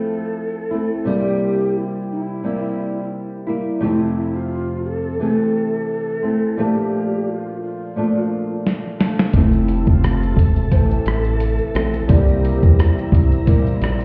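Heard muffled through a wall with a stone-room reverb, this hazy, nostalgic bedroom-pop fragment opens with a dark, fingerpicked flamenco guitar wobbling with chorus and pitch drift beneath a distant, breathy clay ocarina melody trailing tape echo over a lightly swung Fmaj7-to-C7 progression. A gritty, sampler-style drum kit with a thumpy kick enters up front on a fill at 8.7 seconds. At 9.3 seconds a glossy, detuned synth bass and a faint, warbling organ-string pad join, and a quiet, jingly tambourine appears briefly from 10 seconds.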